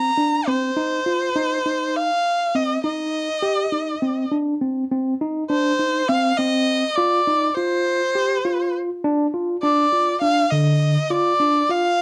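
A bowed erhu and a tine electric piano begin together at the very start of this driving, intricate progressive instrumental, cut from a longer piece. It moves in 7/8 at 203 BPM counted in eighths, with a straight feel in C minor and tuning set to A4 = 441 Hz. Up front and close, the solo erhu carries the melody between C5 and Bb5 in a clear, smooth, even voice, shaded with vibrato and portamento. Beneath it, the electric piano plays clean arpeggios from D3 to G4 through a combo amp, its medium tremolo giving the line a gentle shimmer. The harmony opens on C7sus2, settles on Cm at 0.8 seconds, and reaches Dm at 9.0 seconds, while a new section begins at 4.9 seconds. A wet studio ambience with a short half-second decay frames the dark, warm production.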